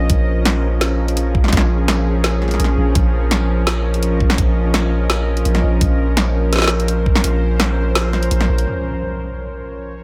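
Light reverb and a digital ambience frame this spacious, tense excerpt of half-time drum and bass at 168 BPM in Bb minor, where an up-front, string-like drone of sustained chords, sawtooth with ring modulation, vibrato and its own reverb, pumps against the sidechain while a deep, mellow 808-style bass holds a long Bb1. A knocking electronic kick and a layered kit with a woody snare and bright hats, re-recorded in a small room, drive the groove until the kick drops out at 7.2 seconds. The drums and bass then stop at 8.7 seconds, leaving the drone and an electronic impact to close the clip.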